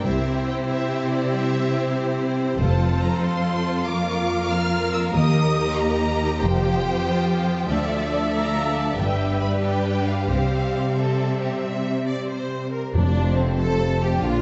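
Heard on a reverberant scoring stage with a softened top end, this cinematic passage from a longer piece unfolds in 12/8 with an adventurous, soaring mood. Two violin sections carry the music: one sings the expressive melody with a warm, vibrato-laden tone, while a clear, intense, more distant section plays a second line beneath it. A rich chamber viola section fills in the accompaniment. Beneath it, a close, up-front cello section and a lush, distant double bass section, both smooth and even, anchor the bass. In the background, a ringing concert harp plays thumb-plucked arpeggios, and soft-mallet timpani add round strokes at 2.6 seconds. At 12.9 seconds, the timpani return and a dark, roomy trombone section enters with sustained chords as the harmony, after colourful turns through Eb and Dmadd9, arrives on F.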